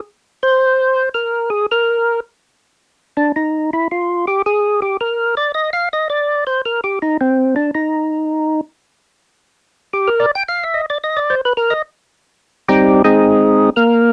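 Jazz in C minor at 110 BPM, swung in 4/4 with a smoky, soulful mood, in this excerpt cut from a longer piece. A lone percussive tonewheel organ plays solo from 0.4 seconds, fat and lightly overdriven through a slow rotary speaker with vibrato and third-harmonic percussion, ranging from G3 to G5 and sitting up front. The dry, close 1970s-style studio sound carries moderate booth ambience as the harmony moves from an open start to Cm at 6.6 seconds and Ab at 13.2 seconds.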